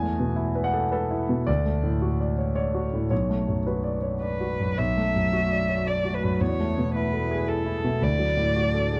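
Reflective and fragile, this neoclassical piano and strings excerpt in B dorian moves at 111 BPM in a rubato 3/4, with a warm, deep-bassed concert grand carrying the accompaniment from the start through chords like Esus4, D and Bm7, a veiled, con sordino solo violin entering with a bowed, vibrato-laden melody at 4.2 seconds, and a warbling, detuned tape-like pad with chorus and built-in reverb settling in the background at 5.3 seconds, all captured in a dry, close 1970s-style small room.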